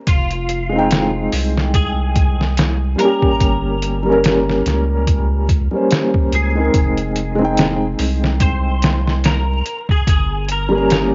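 A lightly swung sixteenth-note groove in four sets the pace of this short, dark and cinematic trip hop cut from a longer piece. The sampler-style drum kit sits up front with a thumpy, pitched-down kick, a medium-tuned snare and hi-hat, all compressed, muffled and given a tape-aged color. Beneath it, a deep, round sine sub bass with a fast attack holds sustained low notes, while from 0.7 seconds a felt-muted upright piano adds soft, intimate accompaniment treated with tremolo, 12-bit sampler grit and cassette tape. A clean, picked semi-hollow electric guitar carries the melody further back in the mix, its hollow-body tone coloured by ensemble chorus, tape echo and cassette saturation. The harmony moves between Fm7 and Gdim, and the dry home-cassette sound, dulled in the top end and dusted with vinyl crackle, gives the whole piece a close, shadowy atmosphere.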